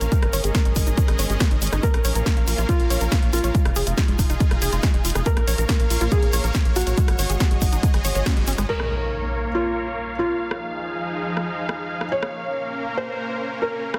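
This emotional, euphoric uplifting trance passage moves at 140 BPM in straight 4/4, in B-flat minor with tuning set slightly low at A4 = 436 Hz, cycling through Absus4, Bbm and Fm7. A lush, bright supersaw pad holds slow-attack chords with a long release, pumping against the sidechain under a low-pass filter. A soft felt-muted upright piano with audible action noise carries an intimate second line through a digital delay. In the background, a tight, detuned sequenced synth plays chorused, delayed arpeggios under a filter sweep, while a dark, plucky sequencer bass with a ring-modulated edge drives underneath and a grainy, close tube shaker adds texture. The up-front, overdriven electronic kick and a punchy analog drum machine with low-pass-filtered hi-hat, snare and crash, plus rim clicks, power the groove until a band accent at 8.3 seconds, where the kick drops out. At 8.7 seconds an electronic impact hits as bass, arpeggio and shaker fall away, leaving pad, piano and filter-swept drum machine in a lightly reverberant, dense and heavily limited mix.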